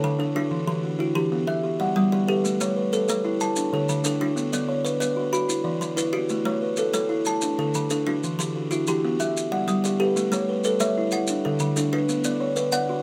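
Southern African traditional music in a hypnotic mbira-style interlocking cycle at 124 BPM in a straight 12/8, in A mixolydian, where a soft, buzzing kalimba with a woody, fingertip-plucked solid-board tone and a bright, ringing hollow-box kalimba with a thumbnail pluck weave up-front arpeggios over a cycle of D, Em, G, A and Bm chords, joined at 2.5 seconds by grainy, close maracas, all in light reverb in this excerpt cut from a longer piece.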